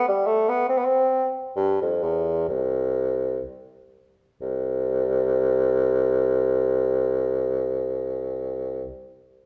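Classical baroque-style fantasia for unaccompanied bassoon in C major, a dance-like and radiant fragment from a longer piece, where the lone bassoon, roomy and warm with light vibrato and a soft attack, plays freely in rubato at about 60-74 BPM in 4/4 from 0.0 to 8.9 s, slowing down over the first 4.4 seconds before a new section begins, all set in the lingering reverb of a recital hall.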